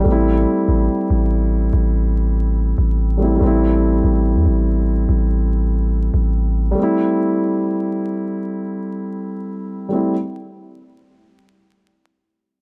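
Trap-style hip hop in A minor at 143 BPM with a half-time feel, this eerie, hard-hitting passage is cut from a longer piece and tuned slightly flat to A4 = 438 Hz. A dark baby grand piano with long sustain sits up front on an Am7 chord across the full 10.1 seconds. A deep, sine-toned 808-style bass with a fast attack and long decay rumbles beneath until 6.7 seconds, through a change of section at 3.4 seconds, all captured as a dry, gritty hardware recording in a small room with vinyl crackle.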